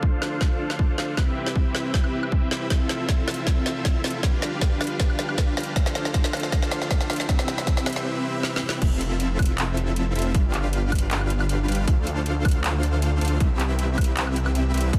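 A huge, airy supersaw riff with sidechain pumping, low-pass filtering and delay opens over a hard-clipped electronic kick and a trap kit of woody snare, metallic hi-hats, handclaps, woodblock and crash, building through a drum fill in a euphoric, playful half-time future bass groove until a thick, chorused detuned saw bass drops in at 8.8 seconds beneath jazzy seventh chords in a dense, heavily limited modern mix.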